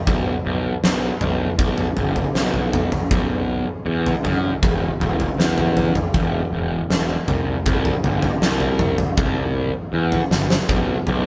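A huge, acoustic arena drum kit sits up front with a fat snare, a punchy kick and toms ringing in a hall-like space, capped by a drum fill at 10.3 seconds. Beside it, a picked electric bass growls with bright, overdriven fuzz from E1 to F#2, played direct and amped and also pushed forward. This dark, brooding slice of quiet-loud alternative rock moves at a straight 79 BPM in 4/4, tuned to A4 = 441 Hz. It sounds like a band playing live in one room with moderate studio reverb, cut from a longer piece.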